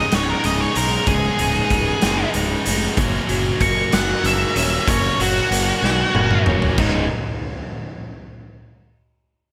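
A big arena sound bathed in lush hall reverb frames this restless, anthemic slice of quiet-loud alternative rock, moving in a slow 6/8 at 63 BPM from Dbsus2 to Gb. An octave-fuzz lead guitar carries the melody as a solo with slapback echo, over a dark, lo-fi guitar through a small old amp picking arpeggios in spring reverb, a bright, scooped high-gain guitar riff and a growly fuzz fingered bass. The raw garage drum kit sits up front with a punchy kick and a gritty, pumping stone-room sound, rolling into a fill at 5.8 s. The lead drops out at 6.4 s, and the other parts stop near 7.0 s.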